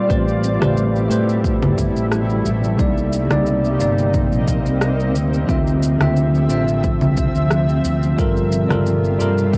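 A bell-like tine electric piano with tape echo and plate reverb opens this relaxed sunset chillout excerpt alongside a shimmering, ethereal ambient pad whose chorused, slow-attack chords carry an octave-up granular sheen. From 0.1 s a round, dark fretless bass with tube saturation joins a punchy overdriven electronic kick and a layered kit of shaker, rim click and congas, settling into a lightly swung 16th-note groove at 89 BPM in A phrygian. The harmony moves through Am9, Cm9, Dm9 and Gm9, and the whole excerpt sits in a booth with moderate ambience and the soft grain of a home cassette recording.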